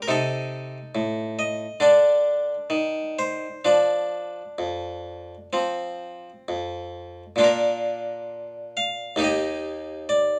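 Flexible rubato in 4/4 at roughly 63-70 BPM sets a serene, radiant pace for this baroque-style classical suite movement in Bb major, cut from a longer piece. A solo harpsichord plays throughout, bright and plucked with a single set of strings in the Italian style, sitting up front in light reverb and ranging from Eb2 to F5. Its harmony passes from A diminished through C minor and D minor colours to an open F before settling on Bb and then Eb as the opening section returns at 7.4 seconds.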